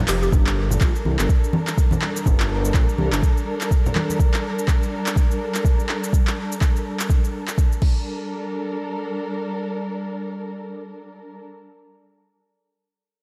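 A dark, woody string section holds lush sustained chords that pump with sidechain compression, as does the deep, rumbling detuned saw bass beneath them, while a deep, up-front electronic kick, an afro-pop kit of metallic hats, shaker, handclaps and crash, and ringing, close congas drive this warm, earthy afro house excerpt with a swung feel before the bass drops out at 3.2 seconds, the drums fall away at 7.9 seconds and the strings carry on alone until 11.4 seconds.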